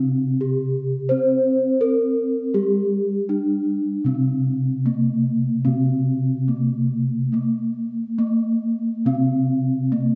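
From the opening moment, two bronze metallophones sound together in this serene, ceremonial gamelan fragment, moving at 70-85 BPM in 4/4 with a straight feel. The melody part rings out up front with an airy, shimmering quality, its paired tuning producing beating tones as padded disc mallets draw a mellow, soft attack from the metal; a slapback echo trails its notes. Beneath it, the accompanying metallophone holds the lower register with a darker, smoother bronze tone, struck with the same padded mallets and carrying the same paired-tuning shimmer. The two parts share a reverberant scoring-stage space with a 1.5-second decay that gives the metallic resonance a lingering glow. Around 7.3 seconds the music moves into a new section, which continues until the cut at 10.2 seconds.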